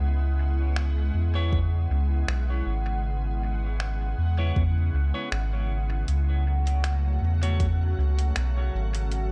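Ambient dub at 79 BPM in C# minor, spacious and hazy, this brief cut from a longer piece rests on a round, mellow sub bass with tube saturation and a pure, warbling organ-like pad with ensemble chorus, while a bubbling, resonant stepped-filter texture drifts high above, muffled lo-fi snaps and hi-hat arrive at 0.8 s, clean picked electric guitar stabs with dub echo enter at 1.4 s, and a deep, overdriven electronic kick pulses from 1.5 s to 7.8 s, all moving from C#m7 to F#m in an echo-heavy digital ambience.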